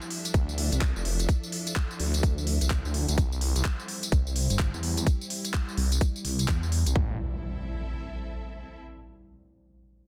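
Bouncy and gritty, this bass house cut at 127 BPM in A minor swings its 16ths over a tight, up-front electronic kick and a crisp garage kit of handclaps, hi-hat and tambourine with soft clipping on the snare, while a thick, swirling phased saw bass with tube saturation and a filter sweep pumps beneath a deep, moody chorused pad and a clear, bowed string ensemble that fades out, the chords moving from Dmadd9 to C before an electronic impact lands on Am at 7.0 seconds in a dense, heavily limited, dry mix.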